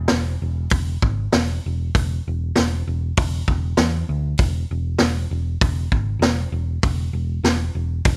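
Garage rock in E mixolydian, this raw, swaggering excerpt moves at 98 BPM in a straight 4/4, cut from a longer piece and lasting just over eight seconds. A hollow-body short-scale electric bass, picked and amped, carries the low end from the very start, its dark, round tone thickened by tube saturation as it moves between E1 and E2. A vintage drum kit joins at 0.1 seconds with hi-hat, kick and snare, its punchy kick and medium-tuned snare sitting mid-forward with a rolled-off top end. Both parts sit up front in a dry studio room with little reverb, giving the pair a close, in-your-face presence. The whole passage stays in a single section, with both players continuing throughout.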